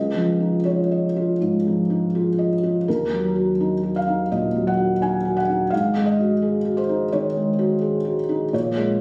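A felt-muted upright piano opens this intimate, tender neoclassical fragment, its soft, mellow and dark tone sitting up front with audible action noise as it moves through Dbadd9, Ebm and Ab7sus4 in an unhurried rubato 4/4. At 2.9 s a deep, punchy sine sub bass enters in the background, its pitch-drop attack giving way to a sustained low tone. The sound, captured on a phone in the room, is set in a moderate recital-hall reverb that adds a sense of space.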